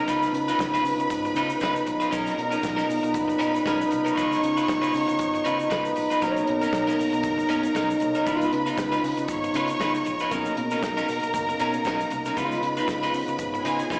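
Disco excerpt at 117 BPM with a joyful, danceable swing, where mellow French horns hold up-front sustained chords over a lush, bowed string line, a picked, slightly broken-up electric guitar, a round fingered bass, a dark soul drum kit and a grainy shaker in the background, all rocking between C#9 and Bmaj9 before a worn, slightly out-of-tune electric piano with overdrive, phaser and slapback echo joins at 6.2 seconds, the whole heard as a live gig through the venue's PA with recital-hall reverb and a small-speaker sound.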